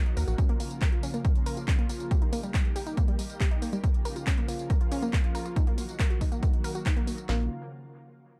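A dark, warm production frames this soaring, bittersweet uplifting trance fragment at 139 BPM in Bb minor, where a silky, bright analog string pad with ensemble chorus, 12-bit sampler grit and sidechain pumping holds sustained chords across Bbm, Eb and Ebm, a lush, warbling, detuned unison pluck with dub echo spins arpeggios, one up-front electronic kit drives a punchy kick, cracking snare and handclaps while a second layers metallic hi-hats, tambourine and more claps, and a tight, tube-saturated sawtooth sequencer bass appears only briefly at 0.2 and again at 7.3 seconds.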